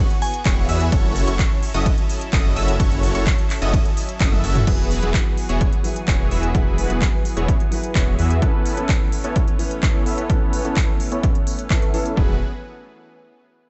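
Triumphant and uplifting, this festival progressive house excerpt at 128 BPM in E major opens on a drop where huge, detuned supersaw chords pump against a punchy overdriven kick drum, a thick, beating saw bass, a crisp-hatted pop drum kit with claps, crash, ride and toms, a single glassy FM bell note, a bright phased pluck arpeggio and a very quiet lush pad, before a drum fill at 4.2 seconds gives way at 4.7 seconds to a filter sweep on the supersaw as a grand piano with long sustain enters in the background, and the bass drops out at 8.4 seconds.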